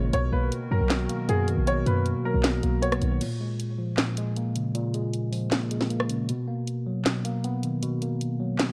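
A dark, warm digital ambience frames this brooding, menacing half-time trap excerpt, where a clear concert grand piano carries a short melody through a delay. Underneath it sit a tine electric piano with a phaser, a warbly, nostalgic tape-like pad of detuned sustained chords set in the background with chorus and reverb, and a punchy, tight 808-style bass placed up front. At 3.2 seconds the piano, pad and bass drop away for a break, leaving the electric piano and a sharp, bright trap kit of snare, hi-hat, handclaps, rim click and crash, roughened with vintage 12-bit sampler grit, to carry on until 8.7 seconds.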